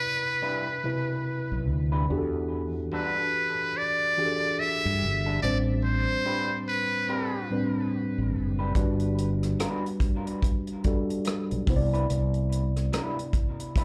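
A buzzy, thin trumpet with a metal mute carries the melody in this soulful, late-night neo-soul and R&B excerpt at 72 BPM, singing with light vibrato and scooped notes through plate reverb, slapback and tape echo until 7.5 seconds. A worn, slightly out-of-tune tine electric piano lays down mellow chords from Cmaj9 through Em11 and Am11 to Gmaj7, while a slightly broken-up, lo-fi electric guitar picks a quiet second line, and a dark, round fretless bass joins up front at 1.5 seconds. A soul drum kit with a tight kick and rolled-off top arrives at 8.8 seconds with hi-hat, kick and rim click, all heard as a live gig through the venue's PA with club reverb.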